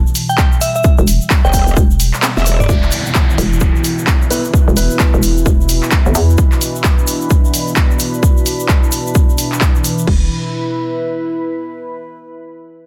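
A bright, resonant sawtooth pad with a phaser and a hollow, bouncy FM bass open this swaggering, aggressive bass house excerpt in E minor, pumping at 130 BPM with a swung 16th-note feel. A punchy, overdriven electronic kick sits up front beside a layered house kit with a cracking snare, handclaps, hi-hat, toms and crash, while a grainy, saturated tube shaker runs underneath. In the opening drop, a glassy, crystalline FM bell carries the melody with tremolo and tape echo, and a growling, wobbling distorted bass bursts in briefly before the kick drops out for a drum fill at 2.2 seconds. A downlifter then sweeps through the next section, where a mellow, boxy baby grand piano adds short stabs with audible action noise. A deep, moody ambient pad with a sub octave and built-in reverb rises from 4.2 seconds and carries on alone to the close, over a dense, heavily limited mix with light digital ambience.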